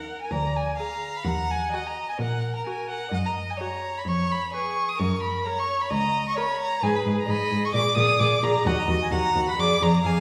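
Heard from further back in a recital hall, this string quartet recording carries a wet reverb with a tail of 1.3 seconds. The music is a quick classical-period movement in E-flat minor at 129 BPM in 4/4, played with a rubato feel and an urgent, dramatic mood, cut from a longer piece. A single first violin carries the melody up front, its dark tone shaped by vibrato and expressive portamento high in its range, between Gb5 and Eb6. Beneath it, the second violin sounds focused and distant on its supporting line, while the viola fills in the accompaniment with a clear, vibrato-touched tone. The cello enters at 0.3 seconds with a smooth, even bass placed up front, and the harmony moves from Bb7/D through Ebm, Gb, Db7/F, Abm and Bb7 before returning to Ebm and closing on Bb7.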